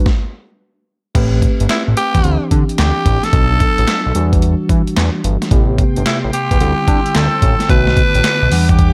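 A mellow, clean tine electric piano opens this slick, bouncy new jack swing excerpt, and a dusty, sampler-style drum kit joins at 0.1 seconds during a brief stop before the groove settles in over a swung sixteenth-note feel. The kit is gritty and overdriven, with a thumpy kick, a medium-tuned snare, hi-hat, handclaps and crash cymbal under gated reverb, placed up front. A fat analog bass enters at 1.2 seconds, thick and detuned with a filter sweep and moving notch, as the chords cycle through Am9, D9sus4, Bm7 and Em9. A growling tenor saxophone carries the solo melody from 1.7 seconds, breathy and raspy with light vibrato and a punchy pop style. Later, a swirling, bright analog pad with phaser and chorus drifts in the background, while the overall sound stays dry and close.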